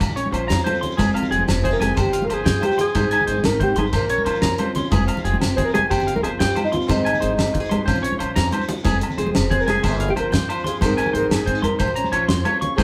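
A straight 12/8 pulse drives this bittersweet highlife guitar band excerpt, anchored by a cloth-damped, thuddy drum kit with dark cymbals, a fat snare, a tight kick and a gritty, saturated character, while high-tuned congas played with soft hands join at 0.1 s. Ringing agogo bells sit far back in the mix, and a grainy, distant shekere adds a mellow rustle. An upright bass plays pizzicato with a woody, dark tone, as a small, warm nylon-string guitar is fingerpicked through the chord changes. Above it, an electric guitar at the edge of break-up picks twangy, slightly broken-up arpeggios in a high register. The breathy alto saxophone carries the jazz-style melody with vibrato and scooped notes, sounding roomy and set back, over a cycle that moves from Bbmadd9 to Fmadd9, Csus4/G and Ab. The band plays live in one room with moderate studio reverb.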